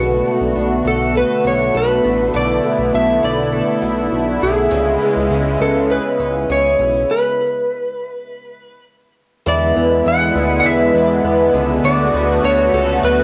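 A hazy home recording on cassette, set in a wet studio reverb, carries this ethereal dream pop excerpt in B dorian at 101 BPM, moving from Bm7 to C#m7, then E7 and back to Bm7. Up front, an electric slide guitar played with fingerpicks sings the melody in a dark, slightly broken-up tone, trailed by tape echo. Beside it, a lush unison pad holds sustained chords with a nasal, bright sawtooth sound, its detuned voices thickened by chorus and a soft attack with a long release. A picked twelve-string acoustic guitar weaves arpeggios underneath, woody and boxy with old strings, its octave-doubled shimmer wrapped in lush chorus and tape echo. A fat analog bass anchors the low end with a detuned sawtooth and a filter sweep. A stop falls between 7.1 and 9.5 seconds, where a new section begins on the E7 chord.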